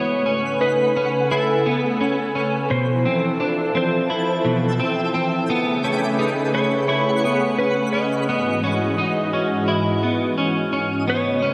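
A lush, thick pad of detuned sawtooth voices opens this dreamy, blissful dream pop excerpt, warbling with a vintage chorus as its slow-attack chords sustain into long releases. Alongside it from the start, a clean, compressed electric guitar picks arpeggios up front with a gentle sheen of ensemble chorus and tape echo, while a dark, clean lap steel carries the melody with fingerpicks, slide and volume swells, colored by analog chorus and tape echo. At 0.4 seconds a twinkling granular texture drifts in high above, its bright, sparkling FM tones adding an octave-up shimmer through its own reverb, chorus and echo, sitting quietly beneath the other parts until 11.4 seconds. The harmony moves from Amaj9 to Fmaj7, back to Amaj9 and on to Emaj9/G#. A long, wet plate reverb soaks the whole mix, giving it a floating, hazy glow.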